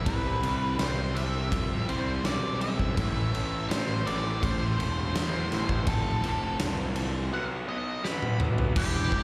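A straight 4/4 pulse at 83 BPM drives this cathartic, brooding quiet-loud alternative rock fragment of a longer piece, where a dark, fuzzy octave-fuzz lead guitar solos with distortion and slapback echo over a lo-fi, double-tracked garage guitar riff, a growly, up-front fuzz bass, and a punchy, natural-sounding arena drum kit that enters at 0.1 s and closes with a fill from 8.0 s, while a clean, very quiet twelve-string electric guitar picks arpeggios only until 3.0 s, all heard as a live gig through the venue's PA with recital-hall reverb as the chords move from C to Am, F and B5.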